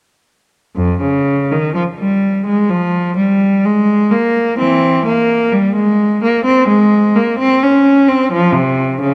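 A solo cello enters at 0.8 seconds, bowed by a single player and placed up front, opening this brief cut from a longer classical piece in the manner of a baroque-style suite movement for unaccompanied cello. The mood is grave and solemn, set in F minor at a slow 64 BPM in 4/4, with a rubato feel that lets the line breathe freely. The tone is clear and smooth, its sound even from note to note, touched with a light vibrato as the instrument spans a range from F2 to Db4. A moderate concert hall reverb, with a decay of 2.1 seconds, surrounds the cello and gives its notes a sense of space. The passage ends at 9.1 seconds, leaving a short, sombre glimpse of the movement.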